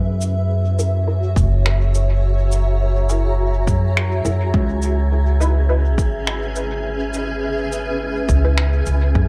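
Ambient dub with a spacious, deep mood, set in an echo-heavy studio reverb, built on a woody, thumpy pizzicato upright bass up front and an overdriven electronic kick that enters at 1.4 seconds, while cabasa and finger snaps with a rolled-off top ride on dub echo. A cloudy, detuned granular pad sustains the chords from F#7 to C#m7, and muted sawtooth chord stabs sit in the background through phaser, ensemble chorus and dub echo. A breathy, wind-like tuned noise texture drifts in at 1.2 seconds beneath it all in this short cut from a longer piece.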